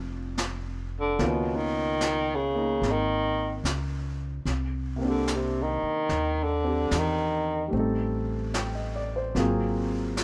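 This jazz ballad excerpt moves at a relaxed 74 BPM in 4/4 with a swung eighth-note feel, setting an intimate, smoky mood. A mellow baritone saxophone carries the melody up front from 1.0 to 7.8 seconds, its soft attack, vibrato and scooped notes giving it a vintage, solo character in a low register. Underneath, a warm baby grand piano with a natural tone provides accompaniment, while a pizzicato upright bass with gut strings sounds woody and thumpy. A brush drum kit enters at 0.4 seconds, sitting mid-forward with brushed snare and hi-hat in a small room and a rolled-off top. Light reverb surrounds the ensemble as the harmony drifts through rich chords such as Bb69, Cm9 and Am7b5 before moving to Ab13.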